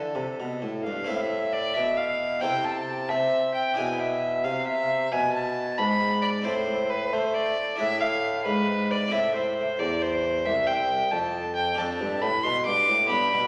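A rich, gut-string violin sings a serene, flowing melody up front, with light vibrato in period style and a slightly reedy edge, over an airy, round harpsichord accompaniment and a warm, lightly vibrato solo bassoon holding the bass. This baroque-style sonata movement with continuo moves in a straight 12/8 at 90 dotted-quarter beats per minute in A minor, its harmony circling between A minor and E7 before turning toward Dm7/F near 11.8 seconds. A wet concert-hall reverb and a layer of vinyl crackle surround the trio in this excerpt cut from a longer piece.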